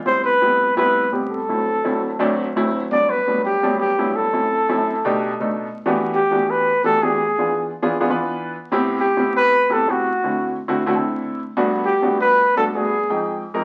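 A dark, close-miked trumpet and a warm baby grand piano begin together, the trumpet carrying a soloistic jazz melody up front with vibrato and a soft attack while the present piano supplies rich extended-chord accompaniment. The mood is sunny and sophisticated, moving through a turn toward a minor-key passage at 5.8 seconds before closing on an unexpected Fm7 at 12.9 seconds. A club-style reverb and the crackle of a very old 78 rpm record give this fragment, cut from a longer piece, a vintage sheen.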